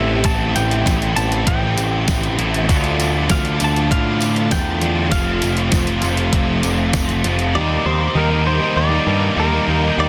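Blissful and hazy, this short shoegaze and dream pop excerpt pairs a bright, twangy clean guitar melody with analog delay against two overdriven guitar riffs, one biting and thickened with ensemble chorus, the other treated with reverse reverb, over a growling, up-front overdriven bass. A detuned, tape-warm 8-bit drum machine with a thumpy kick and medium-tuned snare plays up front alongside a jingly tambourine in the background, both dropping out near 7.5 seconds as the chords move from Am7 through Dm7 and F to Ebmaj7. Very quiet, mellow organ-like string chords with phaser sit underneath, and the dry mix is dense and heavily limited.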